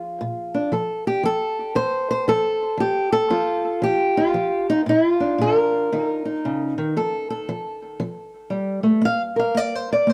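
A fingerpicked old ladder-braced acoustic guitar, dark, woody and boxy with old strings and a touch of tape echo, opens on Bb7 and plays solo up front through this gritty, swaggering fragment of acoustic country blues, its swung eighths in 4/4 moving through F, Bb and Eb5 before a steel-string solo turn at 9.0 s, with light reverb and a faint mains hum in the room.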